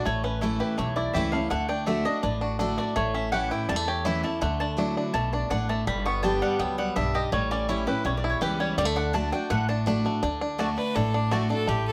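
Lively and virtuosic, this bluegrass excerpt in a straight 4/4 features a woody, double-strung mandolin carrying a solo of stabs through the first 10.2 seconds, over bright, full-bodied picked guitar accompaniment, twangy fingerpicked banjo arpeggios and a thumpy pizzicato upright bass on gut strings. The chords move from A and D through Dadd9, G and A7 before resolving to D, all in light reverb. At 10.8 seconds a clear, boxy fiddle enters up front with an intense, airy bowed melody touched by light vibrato.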